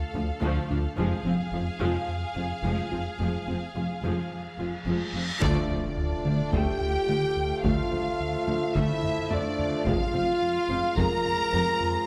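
A straight 4/4 pulse drives this tense, futuristic excerpt from a hybrid orchestral and electronic film score, where a dark, ring-modulated synth bass riff and a tight, detuned sequenced synth arpeggio build beneath lush, vibrato-rich violins, violas, cellos and double basses. A reverse cymbal rises from 4.7 seconds into an electronic impact at 5.4 seconds, where the band hits an accent and a distant violin melody, a mellow, up-front French horn section, a vintage-toned trombone section and heavy-stick taiko drums all enter. The whole cue sits in a wet scoring-stage reverb that gives the strings and brass a roomy, cinematic depth.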